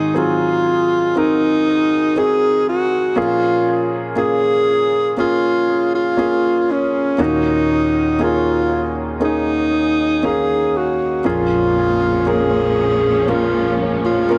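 Melancholic and heartbroken, this slow pop ballad in Bb minor moves at 60 BPM in a straight 4/4, with a warm, subtoned alto saxophone singing the melody up front with light vibrato and a jazz-inflected solo voice. An intimate concert grand piano accompanies it with deep bass, long sustain and audible action noise, and both share a dub echo inside a moderate echo-chamber reverb that gives the mix its echo-heavy character. At 11.2 s a lush bowed string section enters with smooth, expressive sustained chords as the harmony returns to Bbm7, before this portion of a longer piece is cut off at 14.4 s.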